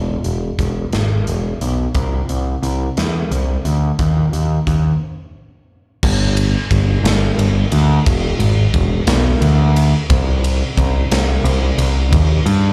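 Cathartic and anthemic, this quiet-loud alternative rock excerpt in a straight 6/8 pairs a growling, overdriven picked electric bass, up front with a direct, amped tone, with a big acoustic rock kit of punchy kick, medium-tuned snare, hi-hat, ride and bright crash cymbals, heard as a live gig through the venue's PA with club reverb, and a break at 5.0 seconds gives way to a new section at 6.0 seconds.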